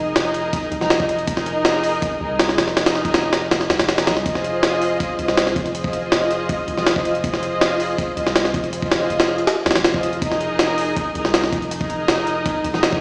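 Drum and bass in a jungle vein at 161 BPM, this frenetic, dark excerpt sets a rich, bowed studio string section with light vibrato and a vintage 12-bit sampler grit holding sustained chords from Absus2/F to Fm7 and back at 10.2 seconds, over a deep, mellow sine 808-style bass with long decaying notes, while an up-front, compressed, pitched-up jungle sampler kit of hi-hat, high-tuned snare and thumpy kick drives from 0.2 seconds, its kick dropping out between 3.5 and 4.3 seconds, all heard through a plate reverb, a bare stone room, vinyl crackle, small-speaker tone and faint mains hum.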